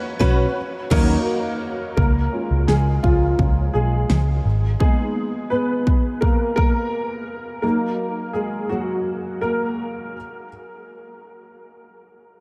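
A straight 4/4 pulse at 85 BPM drives this dramatic piano-driven pop excerpt in Eb minor, where a punchy, layered electronic drum kit with a fat snare and a dark, round, foam-muted electric bass join an intimate grand piano with audible action noise and ensemble chorus in a band accent that opens on Bsus2, while a full-bodied dreadnought acoustic guitar picks a brief background riff, before the piano carries a solo from 2.0 s through Db, Abm and Ebm, slowing from 7.6 s in a dreamy mix soaked in huge ambient reverb.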